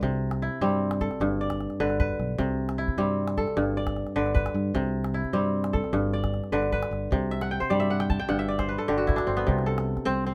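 This short cut from a longer piece of West African string and xylophone music opens with kora, fingered electric bass and calabash all sounding together, settling into a hypnotic, warm groove in a straight 12/8. Up front, the fingerpicked kora spins ringing, crisp arpeggios across a span from G2 to A5, while the amped electric bass sits directly beneath it in a low register from G1 to G2. The calabash adds a deep, close and dry acoustic percussive pulse. The harmony rocks steadily between C and G, and from 7.3 to 9.5 seconds the kora breaks into a fill before the progression lands on a richer Amadd9/C chord. A light reverb gives the whole mix a gentle sense of space.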